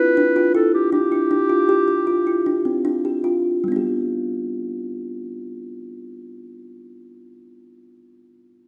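Set in 5/4 with a straight feel at 150-159 BPM, this fragment of a longer contemporary instrumental piece slows down through its opening stretch until 3.6 seconds. In G mixolydian, it has a playful, shimmering mood, moving from a G5 chord to a G major chord. A warm, classical-style clarinet carries the solo melody up front, staying between G4 and B4 before it stops at 3.2 seconds. Beneath it, a kalimba plays thumb-plucked arpeggios from G3 to G4, with a woody, mellow, dark tone that rings softly and smoothly. After the clarinet drops out, the kalimba continues on its own to 7.5 seconds, all set in a wet recital hall reverb.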